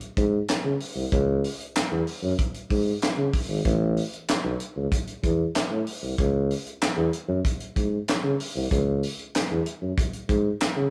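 A tight acoustic funk drum kit opens at 0.0 seconds, its high-tuned snare, tight kick, hi-hat and handclaps sitting up front in a small, natural-sounding room. A tuba joins almost at once, at 0.2 seconds, carrying the bass line from G#1 to C#3 with a warm, punchy tone, a touch of vibrato and a pop-style delivery. The tuba takes the solo spotlight here, set as far forward as the drums and slightly louder. The mood is sly and driving, with a straight funk feel in four. The rough rehearsal-room recording carries light reverb, and the short clip sounds cut from a longer piece, ending at 10.9 seconds.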